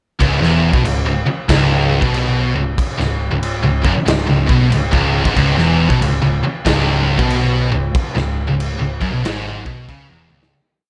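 Ominous and hypnotic, this swung stoner-doom piece in 4/4 sets a bright, double-tracked high-gain guitar over two fuzz guitars, one warm and one dark, all playing single-note riffs from 0.2 seconds, while a round, amped hollow-body bass doubles the riff in quarter notes and an up-front, gritty garage drum kit with a punchy kick and crash in a stone room drives a big groove through a fade-out from 7.9 seconds and a closing drum fill at 10.2 seconds.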